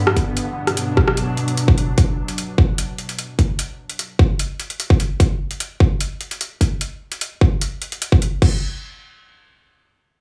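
A detuned, morphing wavetable pad opens this heavy, aggressive excerpt of half-time wobble dubstep at 149 BPM, holding a sustained B minor chord with ensemble chorus, built-in reverb and sidechain pumping until it drops away at 2.0 s. An overdriven dubstep kit with metallic hats, crash and rim clicks joins almost at once, and a punchy, layered electronic kick sits loudest and up front. Both drum parts carry on until 8.5 s in a dry, small-room sound.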